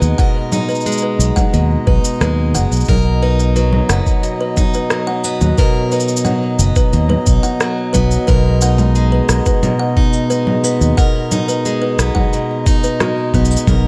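Playful and delicate, this short folktronica excerpt moves at 89 BPM in a straight 4/4, cut from a longer piece. A reedy, breathing harmonium holds sustained chords beneath a bright, full-bodied steel-string acoustic guitar picking arpeggios through a delay, with fresh strings and a touch of finger squeak. A kalimba carries a woody, ringing second line from 0.2 seconds, its thumb-plucked notes sent through a digital delay. The fingered electric bass sits up front with a round, punchy tone, while a muffled, thumpy sampled kick drops out briefly between 2.2 and 2.9 seconds. Tape-tinged electronic shaker, congas and rim click fill out the percussion, and the kick and these drums share a small-room ambience. The harmony moves from G#madd9 to Bmaj7, then settles on G#madd9/B.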